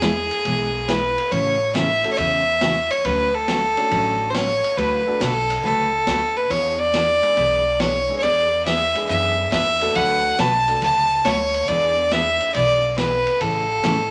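A clear, biting fiddle with light vibrato carries the melody up front in this swinging, down-home western swing excerpt, backed by a full-bodied picked acoustic guitar, a thumpy gut-string upright bass, a gritty vintage drum kit with dark cymbals sitting in the background, and an intimate upright piano with audible action noise that plays from 2.0 to 12.9 seconds, all set in a moderate studio reverb over chords moving from E through Dmaj7 and E7 to Amaj7.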